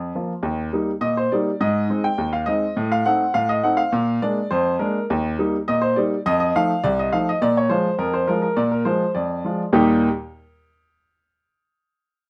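A straight 2/4 pulse at 103 BPM drives this playful, jaunty ragtime fragment in Eb major, tuned to A4 = 441 Hz, played by a solo grand piano from 0.0 to 10.1 s across a range from C2 to G5. The piano sits up front with a bright, brilliant, open tone and long sustain, set in a moderate small-room reverb, as the harmony moves through Eb, Ab, Adim, Bb7 and F7. A new section begins at 9.8 s, returning to Eb just before the clip ends.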